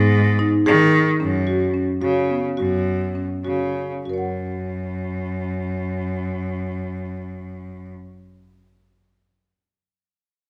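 Contemporary chamber music in 5/8, this short, hopeful and playful excerpt pairs a woody marimba, played with medium mallets on padauk bars, rolling out arpeggios over a bright, biting cello that bows the bass line with light vibrato and an intense edge. The tempo slows between 1.2 and 4.1 seconds before the music moves into a new passage at 4.1 seconds, and the cello stops at 7.9 seconds just ahead of the marimba. A recital hall's wet reverb surrounds both players.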